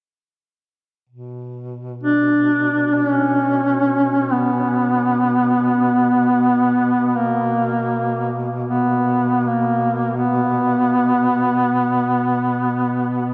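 Longing and solemn, this Caucasian folk lament unfolds in free time in B harmonic minor, tuned to A4 = 439 Hz. A duduk drone on a low B2 enters at 1.1 seconds, its tone distant and roomy yet up front, shaded with vibrato and scooped notes. At 2.0 seconds a second duduk takes the melody, moving within a narrow span from A#3 to D4, close-miked, warm and trembling with vibrato in a folk style. The melody sits clearly above the softer drone. A wet cathedral reverb with a 5.5-second tail places the playing in a vast, echoing space. This brief passage, cut from a longer piece, holds a single section until both parts stop at 13.3 seconds.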